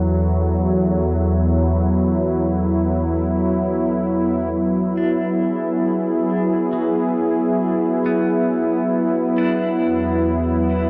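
A smooth, detuned sawtooth pad opens this luminous, peaceful ambient excerpt at 68 BPM in 3/4, its soft-attack chords up front with chorus and a filter sweep over the first seconds, moving from F#m/E to E7 to Bm/E in E mixolydian. At 5.0 s a bright, twangy clean electric guitar fades in with compressed, picked arpeggios far beneath the pad, colored by tremolo and a diffuse ambient delay. A huge reverb with an 8.7-second tail and a dark production wash the whole piece in haze.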